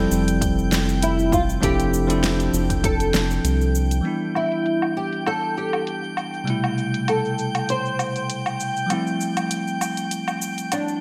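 A small, fingerpicked nylon-string guitar carries the melody from 1.0 s with finger squeaks, chorus and delay, over a bell-like tine electric piano treated with delay and a filter sweep, a glassy texture of drifting overtones, a round analog bass that stops at 4.0 s, a punchy overdriven electronic kick, and a deep house kit with a fat snare, cabasa, hi-hat and woodblock in this smooth, wistful sunset chillout cut at 99 BPM with a lightly swung feel, moving through Fmaj9, Dm9/F, Em7 and Am7 in a bright 1980s-style digital production with lush hall reverb.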